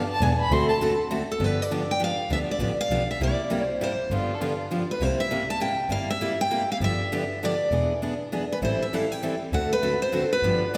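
A bright, full-bodied steel-string guitar carries the melody up front from 1.3 seconds in this playful, swinging jazz manouche waltz, cut from a longer piece. It follows a brief bowed violin solo, nasal and boxy with a smooth vibrato, which returns at 4.1 seconds as a second line. Beneath them, a second picked acoustic guitar supplies accompaniment up front while a close, bowed double bass adds expressive portamento, all set in the lush reverb of a church or concert hall as chords move through seventh harmonies.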